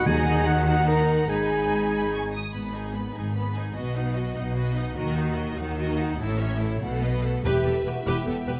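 A straight 6/8 lilt drives this swashbuckling, determined cinematic passage, cut from a longer piece, where lush bowed violins carry a smooth, even, vibrato-laden melody over a second violin line set in the background, with intense, clear violas filling the middle. An airy flute and a solo oboe, both in the background, add a second line during the opening 2.3 seconds alongside distant, roomy French horns holding chords. The horns and very quiet, articulate timpani return at 7.4 seconds as the harmony moves to E minor, while up-front, expressive double basses and focused, close cellos anchor the low end inside a generous scoring-stage reverb.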